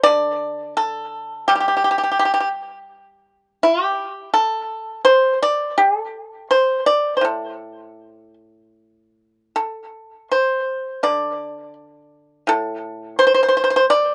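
Chinese traditional solo plucked-string music, this short excerpt runs about 14.1 seconds and carries an elegant, pastoral mood. A single pipa plays alone throughout, moving freely in rubato around a loose pulse of 76-87 BPM in 4/4. Played with fingerpicks, the acoustic instrument sounds mellow yet percussive, sitting up front in the mix and ranging from A2 to D5. Its tone is dry, touched only by light reverb, and the outdoor recording has a soft top end that stops short of 11.0 kHz. The tuning sits slightly high, at A4 = 442 Hz, and the fragment is cut from a longer piece.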